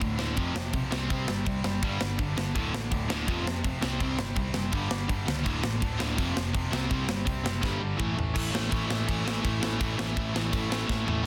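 A straight 4/4 pulse at 166 BPM carries this upbeat, energetic punk rock excerpt, with a tight, polished acoustic drum kit up front, its bright cymbals, medium-tuned snare and airy big-room sound crashing through fills at 7.6 and 10.9 seconds. Behind it, three picked guitars stack the riff over power chords cycling F5, C5, G5 and D5 before landing on A5: one biting and warm, one bright and compressed, and one double-tracked with a bright, distorted edge. A dark, round hollow-body bass anchors the low end, and the dense, heavily limited master keeps the sound dry and close, shifting to a new section at 8.4 seconds.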